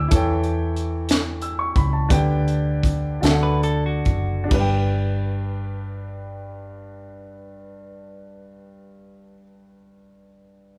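A slow, straight 6/8 gospel pulse at 43-64 BPM in G major, soulful and reverent, with a woody upright piano accompanying from the start to 10.8 s, a dark, round hollow-body short-scale bass underneath, a tight funk kit with high-tuned snare, crash, hi-hat and kick that eases into a slowdown before stopping at 4.7 s, and a brief clean, picked, compressed guitar line from 3.4 s, all played live in one large studio room with moderate reverb, moving from A7/E through G/D and D to settle on G.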